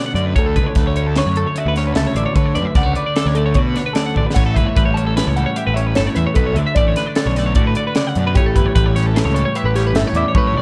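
Set in a straight 5/4, this short cut from a longer math rock and midwest emo piece carries a wistful yet bright mood. A crisp fusion drum kit sits up front in an airy studio room, with a high-tuned snare, punchy kick, hi-hat, toms and crash cymbal, and it plays fills at 4.2 and 10.4 seconds. Two clean, twangy twelve-string electric guitars share the harmony: one plays low accompaniment, while the other picks arpeggios higher up, bathed in spring reverb. A fuzz-laden electric bass with overdrive gives a round, forward low end, and a slightly broken-up electric guitar through a small old amp carries the melody through a phaser. The chords move from Dmaj7 through A7 and Bm7 back to A7, all set in light reverb and a dark, warm production.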